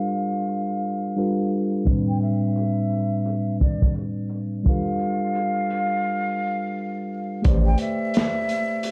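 Dark production with vinyl crackle, a low-pass filter and light small-room reverb frames this reflective, melancholic lo-fi hip hop excerpt in swung 4/4. A breathy, expressive jazz flute carries the melody over mellow tine electric piano chords moving between G9 and Am11, with a filter sweep running until 7.5 seconds, while a gritty, saturated breakbeat kit with a tight kick joins at 1.9 seconds. After a break, a deep, round analog bass sounds briefly at 7.5 seconds as the next section begins.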